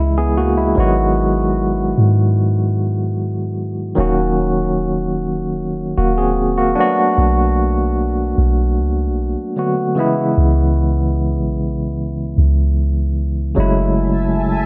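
A straight 4/4 pulse carries this sensual, longing contemporary R&B fragment, where a barky, clean tine electric piano with fast tremolo, played through a combo amp, sits up front with a deep, round 808-style bass as the chords move from C#m7 through Bm7 to an F#m9, and a blurred, granular cloud pad enters at 14.0 seconds in a dreamy mix soaked in church reverb.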